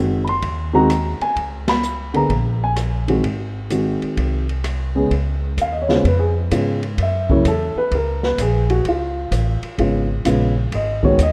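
A relaxed 4/4 swing on the eighth notes carries this short jazz piano trio excerpt, cut from a longer piece, with a relaxed, warm mood. The dark upright piano leads the melody from the start, sounding woody and natural up front, and at 5.1 seconds it moves into a solo over a passage built on Db7, Gb7 and Abm7 chords. Beneath it, the pizzicato upright bass has a growly, steel-strung character and sits close in the mix. The open jazz drum kit joins at 0.3 seconds with hi-hat, kick, ride, rim click and snare, its small-room sound smooth and rolled-off at the top, with shadowy cymbals and a boomy kick. The whole trio hits an accent together at 1.6 seconds, and the light reverb and rough home-demo mix give it an unpolished feel.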